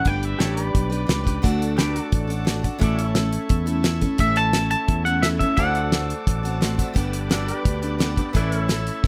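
A twangy electric guitar picks a brief melodic phrase up front in this heartfelt, nostalgic slice of honky-tonk and classic country, stopping at 0.6 seconds. Beneath it, a bright dreadnought acoustic guitar is picked with a full-bodied tone, while a pedal steel guitar sustains clean, compressed chords played with fingerpicks, slide and volume swells. Deep in the background, a thick, gritty tonewheel organ is overdriven through a slow rotary speaker. A dry, damped 70s drum kit with a fat snare and tight kick sits up front alongside a warm fingered electric bass, and the chords move from G through D, A, D7 and Gadd9 before landing back on A. The lead guitar returns at 4.2 seconds for another phrase, and the organ adds a short fill at 6.3 seconds, all under a light reverb.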